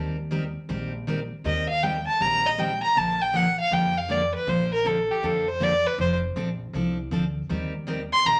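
A brisk swung 4/4 at 159 BPM drives this cheerful, playful western swing country piece in Bb major, cut from a longer performance. A bright, full-bodied picked acoustic guitar with audible finger squeak and a woody, thumpy pizzicato upright bass lay down the accompaniment from the start, moving through Eb6, Bb6 and F6 chords. At 1.5 s a single warm bowed fiddle steps up front for a focused, smooth-topped solo with light vibrato, all set in a wet club reverb.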